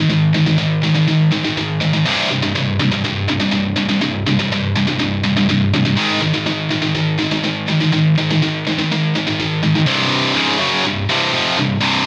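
A straight 4/4 pulse drives this epic, relentless metal fragment, dropping into half time at 9.9 seconds for a closing passage that runs to 12.1 seconds. A lone heavy high-gain electric guitar carries everything, its bright, distorted, picked tone double-tracked and placed up front, with tape echo trailing behind it. The guitar alternates between Ab5 and C5 power chords in a dry room.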